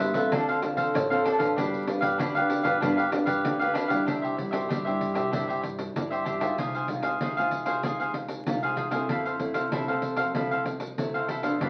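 Samba and choro at 96 BPM in a joyful, festive C major: this short cut from a longer piece puts a bright, crisp, picked cavaquinho up front over a dark, thumb-plucked classical nylon-string guitar, a woody pizzicato upright bass on steel strings in the background, and a jingly, close and dry pandeiro played with soft hands, framed by a wet small-room reverb and the vinyl crackle of a very old 78 rpm record as the harmony moves from Dm7 and G7 at the start to Cadd9 at 4.1 seconds, then Ab6/C and Fmaj7.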